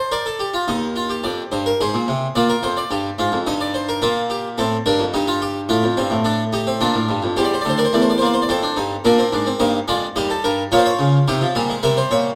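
Classical, baroque-style four-part fugue for solo harpsichord in Eb major, lively and joyful at 108 BPM in a straight 3/4, tuned to A4 = 444 Hz and cut from a longer piece. The harpsichord is Italian in style, with three sets of strings giving an airy, plucked, brilliant tone that spans D2 to E5 and sits up front. Close, detailed microphones catch it within a moderate recital hall reverb, while the harmony moves from Eb through Bb7 and F7 before a second section turns toward C7, Bbmadd9 and Fm/C, ending on C7 at 11.8 seconds.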